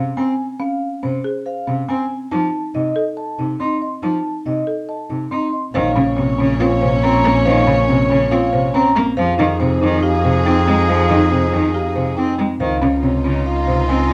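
This urgent, hypnotic stretch of minimalist classical pattern music opens at 140 BPM with a mellow, ringing vibraphone melody over a rich, bowed cello and rustic, woody marimba arpeggios. At 5.7 seconds the music settles into Bb dorian as a clear solo clarinet adds a second line, a bright, lush string section holds sustained chords, and a focused bowed double bass takes the bass. A moderate large reverb and dark production give it a warm depth.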